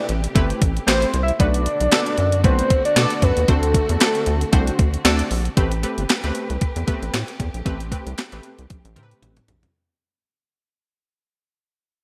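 A fat, nasal analog lead carries the melody over a punchy, detuned polysynth comp with chorus and lush, distant strings in this slick early-eighties boogie funk, cut from a longer piece and moving at 115 BPM in A dorian with a light sixteenth-note swing. A bouncy, rubbery square bass and an up-front, overdriven 12-bit drum machine with thumpy kick, handclaps and gated reverb join almost at once, while a very quiet horn section adds a clear second line from 0.9 seconds. The lead drops out at 5.1 seconds, the track then fades out, and a drum fill closes the final second of the bright digital production.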